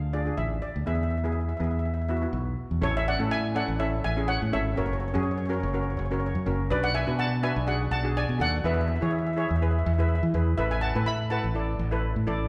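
Bouncy and carefree, this lightly swung calypso fragment sets a shimmering lead steel pan, struck with hard rubber sticks and placed up front, over a double seconds pan carrying the accompaniment and a bright, direct fingered electric bass, heard within the lingering reverb of a church or concert hall.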